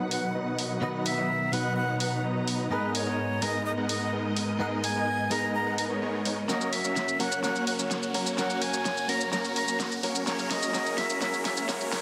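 Euphoric and anthemic, this 12-second cut from a festival progressive house track in B major runs at 127 BPM in a straight 4/4, building over chords of B, G#madd9, F# and C#m. Huge, detuned supersaw chords carry the riff up front through a filter sweep, over dark, woody bowed strings. Meanwhile a breathy jazz flute with chiff and vibrato sings the melody through tape echo, and a clean, direct-recorded electric guitar picks an accompaniment in the background. A pop kit with a fat snare, hi-hat and shaker drives the track, a very quiet riser enters at 4.3 s, and a drum fill begins at 6.5 s, with the mix sitting in a lush hall reverb under a dense, heavily limited master.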